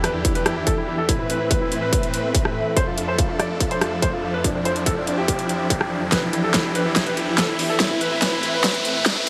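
A muted upright piano with thin felt leads this heavy, aggressive dubstep build-up, its soft, intimate melody trailing a delay over huge, detuned supersaw chords that pump against the sidechain and carry a vintage 12-bit sampler grit. Alongside them, a cloudy granular pad of blurred sine tones drifts in the background with its own built-in reverb, and from 0.2 seconds a distorted, layered electronic kick joins the dubstep kit's huge snare, rim clicks, bright hats and tape-flavoured, up-front punch. The groove sits at 143 BPM in 4/4 with a half-time feel, in E phrygian, moving through Em7, Amadd9, F6 and Dmadd9/F before returning to Em7 and Amadd9. A filter sweep runs through the whole passage, an electronic riser creeps in behind the mix at 3.3 seconds, and a drum fill takes over from 6.1 seconds to push the tension higher. A moderate, lush hall reverb wraps the section, which is cut from a longer piece.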